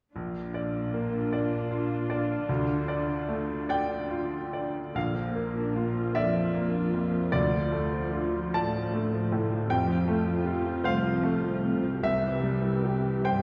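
A brilliant, up-front grand piano accompanies this tender, uplifting cinematic film-score fragment in Bb lydian, drifting at a rubato 50 BPM in 6/8 alongside intimate sul tasto violas and soft-attack cellos carrying the bass with light vibrato, the whole ensemble heard from further back in a lush scoring-stage reverb as the harmony moves between Bb and Dm before opening onto F at 9.7 seconds and C at 12.0 seconds.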